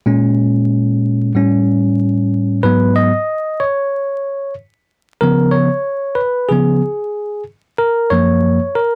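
A bell-like tine electric piano carries this brief hip hop excerpt entirely on its own, entering at 0.1 seconds and playing through to 9.0 seconds across a range from Gb2 to Eb5. Its tone is bright, clean and direct, sitting up front in a dry, close recording with little reverb and a 1970s studio character, dusted with vinyl crackle. The tempo is 93 BPM in 4/4, with a 62% swing on the sixteenths that gives the mood a smoky, cool ease. The harmony drifts through Bbm7, A7, Abm7 and Db7 before settling on Gbmaj7 at 7.8 seconds. Cut from a longer piece, the passage feels intimate and unaccompanied.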